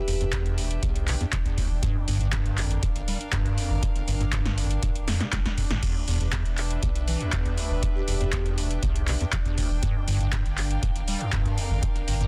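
This dry, dense and heavily limited recording is a raw, trippy slice of acid house, cut from a longer piece. A squelchy, resonant square-wave acid bass carries the riff, its filter sweeping as tube saturation, ensemble chorus, 12-bit sampler grit and digital delay thicken it. Beneath it sits a round, dark analog bass that pumps with sidechain compression. A deep analog kick and an electro drum machine, with punchy snare, handclaps, metallic hi-hats and crash cymbal, drive the track, with a short room on the snare, clap and hats and a drum fill at 5.1 seconds. Behind them, a distant chamber string section with gut-string tone and light vibrato adds a reedy, bowed texture that also pumps with the sidechain. A mellow vibraphone played with soft mallets rings briefly in the background with slow motor vibrato and delay, at the start and again at 8.0 seconds, while the harmony moves between Em7 and Gm7.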